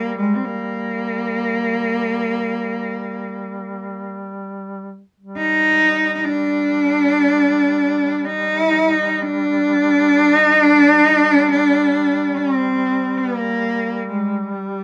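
In free time, this mournful, solemn Caucasian folk lament in G phrygian, taken from a longer piece, sets a single bowed cello up front, expressive with vibrato and portamento as it sings a melody between G3 and Eb4 across the full 14.8 seconds, over a quieter, warm duduk holding a drone on G3 in folk style, its vibrato-tinged tone sounding distant and roomy in a dry outdoor recording.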